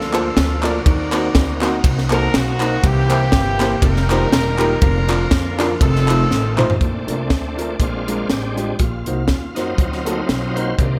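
Uptempo gospel with a soulful, reverent mood and a gently swung 4/4 feel, cut from a longer piece. A distant, roomy horn section carries the melody with light vibrato over sustained chords from a bright, lightly overdriven tonewheel organ with key click, chorus vibrato and a slow rotary speaker, while a woody pizzicato upright bass, a smooth vintage concert grand piano, hollow band-limited handclaps and an up-front fusion kit with a punchy kick, high-tuned snare and bright cymbals drive the groove under a moderate stage reverb. A drum fill at 6.3 seconds leads into a shouting organ solo from 6.8 seconds, as the horns and handclaps drop out.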